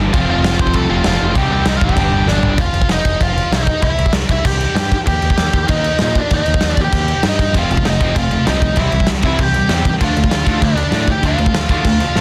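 Straight 4/4 punk rock with an urgent, angry drive, this short cut pairs an up-front, dark-toned big-room drum kit with a punchy kick and a fill at 2.3 seconds, a growling, overdriven picked bass, and a bluesy, distorted lead guitar carrying the melody up front, while two background rhythm guitars, one bright and distorted and the other overdriven, play riffs that drop out at 2.6 seconds, with the overdriven guitar returning at 7.5 seconds and the distorted one at 7.6 seconds, set in light reverb within a dense, heavily limited modern master.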